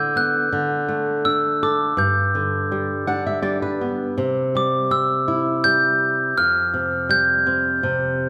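Innocent and sleepy, this short excerpt of a children's lullaby in 3/4 sets a bell-like, ringing glockenspiel melody, played with soft plastic mallets and heard close, dry and up front, over a fingerpicked flamenco guitar accompaniment that adds a warm, acoustic fill from 2.7 to 4.2 seconds, all carried by the lingering reverb of a church or concert hall.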